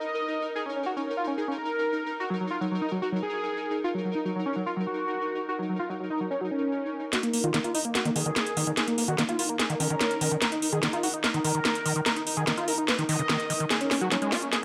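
A thick, nasal unison lead with phaser and tape echo floats over a pulsing, detuned gated texture in this alien, hypnotic psychedelic trance excerpt, until a build-up at 7.1 seconds brings in up-front garage drums with a cracking snare and metallic hats, a squelchy distorted acid bass under a filter sweep, a brief, very quiet wobbling vowel-sweep bass and a barely audible riser at the close, all set in a dark production with light digital ambience.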